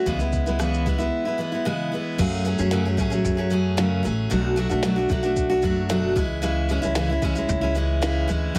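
Acoustic pop with a heartfelt, sunny mood, moving at 113 BPM in a straight 4/4 and cut from a longer piece. A picked steel-string acoustic guitar carries the accompaniment, bright and full-bodied with audible finger squeak, sitting up front and playing from the start. An upright bass joins at 0.1 seconds, played pizzicato with a woody, thumpy tone. A glitchy, electronic drum kit enters at the same moment, its soft kick and tiny snare joined by rim click, shaker and crash cymbal, sounding as though it was re-recorded in a small room. The harmony opens on C#m7, and after a brief break from 1.1 to 2.2 seconds it moves through F#madd9 and Bm7 before settling on C#m. Light reverb and a heavily compressed, radio-like sound give the recording its character.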